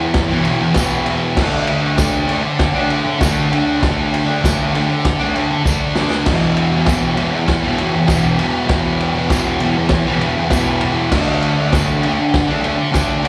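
This rough, small-room capture sounds like a live club set heard through the venue's PA, with the club ambience hanging around the band. It's a rowdy, raw garage rock cut in 4/4 with a straight feel, lifted from a longer piece. A thick fuzz guitar drives the riff from the first moment, bright and distorted, double-tracked and up front, with a slapback echo giving it a rattling edge as it moves between E5 and D5. A vintage acoustic drum kit sits close behind, mid-forward, with dark cymbals, a medium-tuned snare and a punchy kick under a rolled-off top end. Crash and ride cymbals mark the groove, and a short drum fill at 5.7 seconds breaks the pattern before the riff returns to E5. Far back in a large room, a jingly tambourine enters at 0.8 seconds and keeps up a faint shimmer beneath the din.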